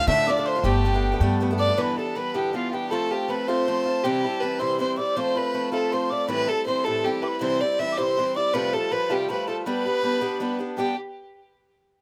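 A dark fiddle leads this bright, cheerful Celtic jig in G mixolydian at 106 BPM in 6/8, bowed sul tasto with light vibrato and tape echo up front, while a pure wooden whistle with a tongued chiff adds a second line above it. A boxy, freshly strung acoustic guitar picks swing-style accompaniment throughout. At the start, a very quiet, twangy banjo plays until 1.4 seconds and a thumpy gut-string upright bass plays pizzicato until 1.7 seconds, with close, detailed microphones and light reverb giving this excerpt from a longer piece an intimate sound.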